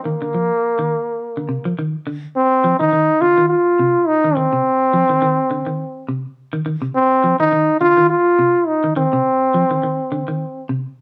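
A clear, punchy trombone leads this funky, driving afrobeat excerpt from up front, playing a smooth-topped solo melody with vibrato in a pop style. Beneath it, a clean electric guitar picks warm arpeggios lower in the mix over a C minor chord, at 104 BPM in 4/4 with a swung sixteenth-note feel and tuning of A4 = 439 Hz. The band plays live in one room with light reverb, and the music moves into a new section at 2.4 seconds.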